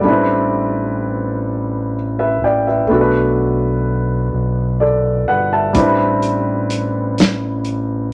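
A moderate studio reverb surrounds this slow R&B passage, cut from a longer piece, with a sultry, late-night mood in a straight 6/8 at 42 BPM in A dorian. An intimate baby grand piano, its action noise audible, carries the accompaniment through Am11, Bm7 and back to Am11, while a smooth sawtooth-and-triangle synth bass holds mellow, sustained notes with vibrato. At 5.7 s a soul drum kit joins on hi-hat, kick and snare, with a tight kick, a medium-tuned snare and a rolled-off top, all set up front.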